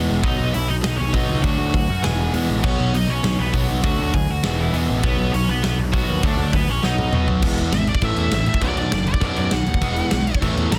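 Punk rock at 200 BPM in E major, upbeat and rowdy, this short cut from a longer piece opens in a half-time feel that holds until 7.4 seconds. Two overdriven rhythm guitars drive the riff from the first moment: a raw, bright garage guitar and a sludgy distorted guitar sitting in the background, joined by a growly picked fuzz bass under them. A big acoustic rock kit arrives at 0.2 seconds, up front with a punchy kick, bright cymbals and a medium-tuned snare that carries a touch of soft clipping, and it rolls through a fill from 6.8 seconds. The nasal lead guitar with a parked wah, dark and overdriven, carries the melody and breaks into a solo at 7.4 seconds as the chords shift through E, A5 and B. The sound is dry and dense, with a heavily limited modern master that keeps the whole band packed tight.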